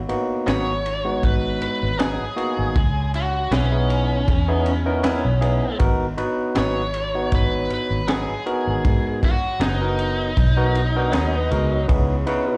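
Straight-eighth soul blues in G# minor at 79 BPM, brooding and mournful, this short live-club excerpt moves between G#m7 and C#m7 over a round, foam-muted fingered electric bass and a gritty, saturated breakbeat kit with a punchy kick, high-tuned snare and dark ride cymbal. A barky tine electric piano sits up front beside the bass, while an overdriven, biting lead guitar carries the melody and a twangy, direct-recorded clean guitar adds compressed stabs, each touched with slapback echo. At 10.8 seconds a breathy, whispered tenor saxophone slips in behind them with a second line, heard through the venue's PA and club reverb.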